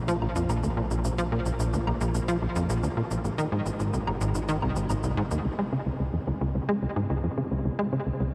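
Drenched in a huge, dark reverb, this cut from a longer piece of ambient, sequencer-driven space music feels expansive and cosmic in a straight 4/4. A tight, punchy sequencer bass riff in sawtooth and square tones drives up front with a nasal filter pluck and tape echo, running through to 8.3 seconds, while a warbling, vintage analog drone with pulse-width modulation and chorus sustains in the background. Dry, tape-tinged electronic cabasa and woodblock carry their own echo until they and the drone stop at 5.4 seconds, as the harmony moves from Bb to Ab and then to Db.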